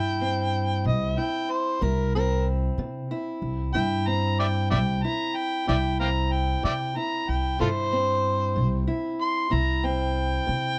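Acoustic country blues in a laid-back, rollicking 12/8 at 62 BPM, sitting on C in C mixolydian through this short cut from a longer piece. An overdriven, amplified harmonica takes a gritty, jazz-style solo up front, full of tongue slaps, scooped notes and light vibrato, while a fingerpicked parlour steel-string guitar adds dark, boxy accompaniment. Pizzicato upright bass gives a woody, steel-strung bottom, and light reverb surrounds the trio.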